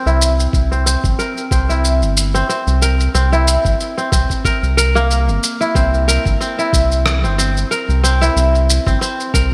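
Organic downtempo at 92 BPM with a gentle 16th-note swing, this earthy, meditative excerpt sets a bright, crisp fingerpicked kora playing ringing arpeggios through a low-pass filter sweep and delay over a round, deep analog bass with sidechain pumping, gritty tape-toned electronic shaker and rim click in gated reverb, and a thumpy electronic kick entering at 0.5 seconds, all resting on a Gm add11 chord inside a lush hall reverb with glossy 1980s-style digital sheen.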